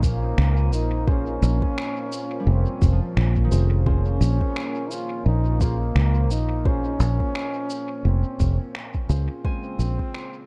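Ambient dub with a hazy, spacious mood, this excerpt sets a mellow, close-miked trombone melody with light vibrato and dub echo over a deep, warbling pad with chorus and reverb that sustains in the background. A punchy, foam-muted fingered electric bass sits up front beside a soft, overdriven electronic kick, while muffled, tape-toned electronic cabasa and finger snaps, ringing fingerpicked harp arpeggios and, from 1.1 s, woody upright piano stabs stay in the background, each of these three carrying dub echo. The swung groove, set in a dark room ambience, begins fading out at 7.6 s.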